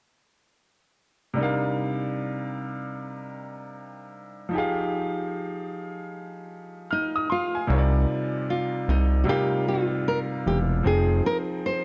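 Reflective and melancholic, this hip hop excerpt moves with a relaxed swing in 4/4. A clear, woody upright piano opens the accompaniment at 1.3 seconds, its smooth, vintage tone and long sustain softened by a low-pass filter as the harmony moves between Cm11 and Fm7. At 6.9 seconds a fingerpicked nylon-string guitar takes up the melody, its full-bodied, deep classical tone marked by fresh strings and a touch of finger squeak, also dulled by a low-pass filter. A fat analog bass enters at 7.7 seconds with the second section, a thick, detuned, saturated sawtooth sound with a fast-attack filter pluck that sustains and evolves beneath the other parts. Piano, guitar and bass all sit up front in light reverb and a small room ambience, with the bass the most prominent of the three.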